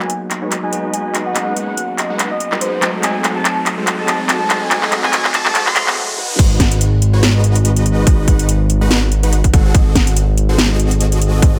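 Future bass at 143 BPM in a half-time, lightly swung 4/4, this emotional, lush excerpt builds for its first 6.4 seconds. A velvety synth lead carries the melody over a bell-like tine electric piano, a breathy pad, pumping supersaw chords and an overdriven trap kit with sharp snare and metallic hats, while filter sweeps, a drum fill and a riser push toward a brief break. At 6.4 seconds the drop lands with a fat, saturated analog bass and a hard-clipped electronic kick up front beneath the huge supersaws, moving between G#m7 and G#7b9 chords in light reverb.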